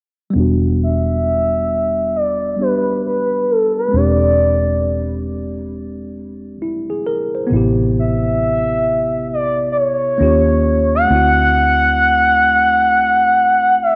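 The gliding portamento lead sits up front in this slow, introspective R&B excerpt, its smooth, sine-like tone carrying a soft attack, sustained notes and vibrato through chorus, phaser and a low-pass filter as it enters at 0.8 seconds. Beneath it, a worn, slightly out-of-tune tine electric piano supplies mellow, low-passed accompaniment from 0.3 seconds, while a vintage, foam-muted fingered electric bass adds a dark, round, amped bottom end from 0.4 seconds. At 67 BPM in 4/4 with a swung sixteenth-note feel, the music moves in E minor through soulful harmony from Em9 to E7alt, Am9, D#9 and D7. A filter sweep runs across the whole passage, and a moderate plate reverb lends the sound a lingering, spacious tail.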